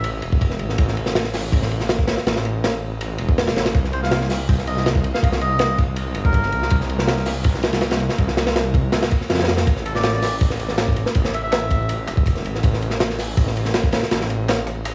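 A crunchy, saturated breakbeat kit drives this raw, atmospheric drum and bass excerpt up front alongside a thick, menacing detuned saw bass, while a reedy, breathy melodica with dub echo and cassette grit drifts in at 3.9 and 9.9 seconds, and a very quiet, dusty sampler-style kit adds hi-hat and snare from 9.7 seconds under vinyl crackle and small-room ambience.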